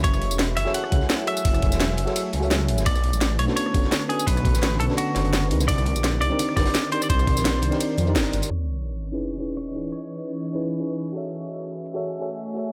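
Soulful and lush, this excerpt of liquid drum and bass at 170 BPM in C# phrygian opens in a drop where a twangy, clean electric guitar melody trails analog delay over a round, warbling FM electric piano with chorus and dub echo, a glassy, ethereal FM pad pumping under sidechain with phaser, a deep, rumbling detuned saw bass up front, a thumpy electronic kick, a faint, saturated breakbeat kit and a layered garage kit with a cracking snare and low-pass filtered hats and cymbals, moving through F#m9, Bm9 and Cm9. The kick falls away at 7.3 s, and after a band accent at 8.2 s the bass and breakbeat drop away as an electronic sub drop lands at 8.5 s beneath a filter sweep on C#m9, before the music returns to F#m9 at 11.3 s in an echo-heavy, lightly reverberant mix.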